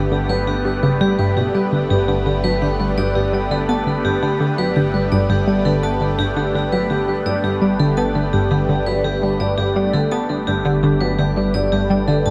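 Ambient, sequencer-driven space music at 84 BPM in G major, cosmic and luminous, where a lush, up-front detuned unison pad holds a sustained Gadd9 chord with chorus, phaser and shimmer reverb, a metallic, ringing vibraphone struck with hard mallets plays arpeggios through fast motor vibrato, tape echo and shimmer reverb, a round, nasal analog pluck plays a riff with chorus, phaser and tape echo, and a fat sawtooth bass anchors a low G, the mix sitting in a long plate reverb and heavy echo as a filter sweep colours the synth arpeggio sound through this 12.3-second fragment of a longer piece.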